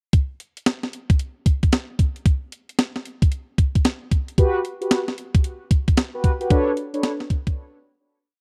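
A dry, close recording with a 1970s studio character and a touch of digital ambience frames this short, slick and bouncy new jack swing breakdown at 113 BPM in 4/4, tuned to A4 = 437 Hz. A clean 12-bit drum machine plays a hard-swung, sampler-style beat alone from the start, with a thumpy kick, a medium-tuned snare and hi-hat sitting up front with the sound of a large room. At 4.4 seconds mellow synth brass enters with short syncopated stabs over Gmaj7 and then Bm9, its round, detuned sawtooth tone dark and brassy with a filter sweep and chorus, before the track fades and the drums stop at 7.6 seconds for a closing break.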